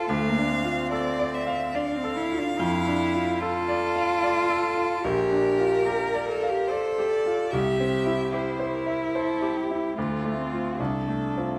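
Up front, a rich, focused cello with vibrato sings a second line beneath a smooth, even solo violin melody, while a bright, brilliant grand piano, also up front, accompanies through Dm, Gm7/Bb and C harmonies in this lyrical, warm slow romantic movement for piano trio at 73 BPM in a rubato 3/4, cut from a longer piece and set in a wet recital hall reverb for its 11.6 seconds.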